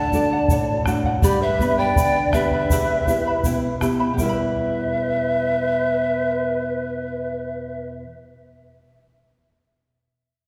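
Andean folk for a small ensemble, earthy and melancholic, moving at 82 BPM in a straight 2/4 in E minor, heard here as a short cut from a longer piece. A polished wooden pan flute carries the melody with airy vibrato, tongued attacks and audible chiff, coloured by a tape echo, while a large end-blown quena sounds a distant second line beneath it. Fingerpicked accompaniment comes from a mellow charango whose double strings shimmer, some doubled at the octave, and from a dark, classical nylon-string guitar placed up front. A round bombo and a grainy, bright tube shaker, both in a small-room sound, drive the opening stretch and stop at 4.5 seconds, leaving the strings and winds to carry the second section. The chords move from D to G to E minor, and the whole ensemble is heard from further back in a wet concert hall with a long reverb tail.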